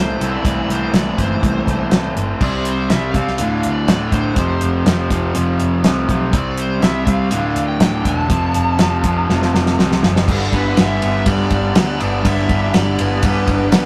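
A straight, driving 4/4 groove comes from a damped 70s drum kit, dry and up front with a fat snare, tight kick and dark cymbals across hi-hat, ride and crash, entering at 0.2 seconds and capping a fill that runs from 9.3 to 10.3 seconds. This swaggering classic rock passage, cut from a longer piece, stacks two bright, picked guitar riffs in the low-to-middle register: a cranked stack guitar with overdrive and spring reverb, and a slightly louder crunchy overdriven guitar. Under them, a picked electric bass sits round, punchy and amped, holding down the low end. Above the riffs, a smooth overdriven lead guitar with a darker tone and slapback echo carries the melody, sitting back a little in the balance. At 10.3 seconds a shouting tonewheel organ with key click and slow rotary speaker arrives on sustained chords, barely audible as the harmony moves to a G6. The whole take has a rough rehearsal-room feel, with tube saturation and a short, wet studio reverb.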